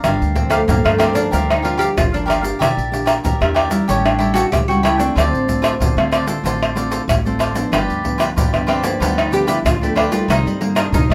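This festive, lively samba and choro excerpt opens with cavaquinho, nylon-string guitar, upright bass and percussion sounding together at 94 BPM in a straight 4/4. The crisp, picked cavaquinho sits high over a full-bodied, fingerpicked classical nylon-string guitar, while the pizzicato upright bass gives a thumpy, woody low end on steel strings. The percussion of tube shaker, tight surdo, pandeiro and tamborim is up front, with soft hands and a vintage, band-limited tone. At 0.4 s a bright, fretless oud enters with plectrum-plucked double strings and a deep voice, carrying a solo line through the end of the clip at 11.1 s. The harmony moves from Gm7 through Em7b5, A7, Dm7 and G7 to Cm7, all heard in a moderate studio ambience, and the passage is cut from a longer piece.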